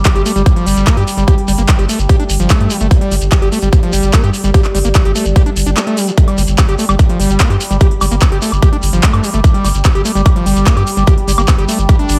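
Driving and hypnotic, this psychedelic trance excerpt in G minor at 147 BPM sets a squelchy, screaming acid riff, distorted and resonant with chorus, dub echo and sidechain pumping, over a slow-blooming ring-modulated drone on G3 with moving overtones, a round, nasal analog bass held up front, a punchy tape-warm kick that drops out from 5.8 to 6.2 seconds, a big-room kit of crisp hats, handclaps and woodblock, and a grainy, close shekere, all under light digital ambience.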